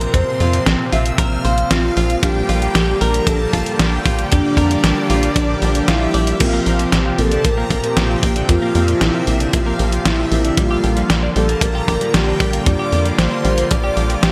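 Nostalgic and nocturnal, this synthwave excerpt moves at 115 BPM in a straight 4/4, with a velvety, dark synth lead carrying the melody through chorus, cassette-tape colour and delay, while a shimmering vintage string machine of violins traces a second line in the background and a soft, detuned supersaw holds sustained chords that pump against the sidechain. Up front, a tight, punchy sequencer bass drives things with a sawtooth-and-square filter pluck, joined by a gritty, saturated kick drum set in a small room and a detuned 8-bit drum machine whose tape-coloured snare, hi-hat and crash carry gated reverb. A twangy, clean electric guitar picks delayed arpeggios until 6.4 s, when a bright twelve-string electric guitar takes over with a lushly chorused riff and a round, mellow FM electric piano adds phased stabs, all over Bbsus2 and Gm7/Bb harmony in light digital ambience.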